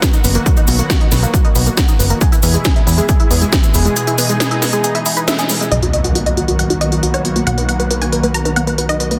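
Uplifting trance with a euphoric lift: a silky, detuned string pad with ensemble chorus holds sustained chords while a tight, driving sequenced synth spins phased, dub-echoed arpeggios. A punchy, funky analog bass and the smooth hats of a techno kit move under sidechain pumping, joined by the kit's cracking snare, a heavy up-front electronic kick, and a grainy cabasa in the background. The kick drops out at 4.0 s. At 5.7 s a lush, full-bodied unison pluck melody arrives with dub echo and a filter sweep, alongside a background electronic impact, all set in a hall reverb and a dense, heavily limited modern master.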